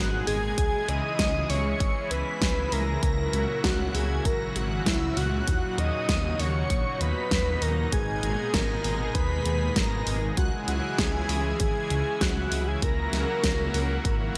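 A steady, straight 4/4 pulse at 98 BPM drives this nostalgic, cinematic synthwave excerpt in G# minor. A pop drum kit enters at 0.3 seconds, its fat, up-front snare and hi-hat sitting in studio reverb with a gated tail, and a punchy, layered electronic kick follows at 0.6 seconds. Underneath, a dark detuned saw bass rumbles and beats in the low register, deep and saturated, while a lush unison pad holds thick, warbling sustained chords with chorus and a sidechain pumping motion. The harmony moves from G#madd9 through C#m, F#7/C# and D#m7 before circling back. The melody comes from a soft octave-layered lead, round and full-bodied with a sub octave, vibrato, chorus, phaser and digital delay. Above it, an airy, dreamy second lead floats an octave higher with a noise layer and a moving notch. A moderate plate reverb and bright 1980s-style digital production tie the parts together.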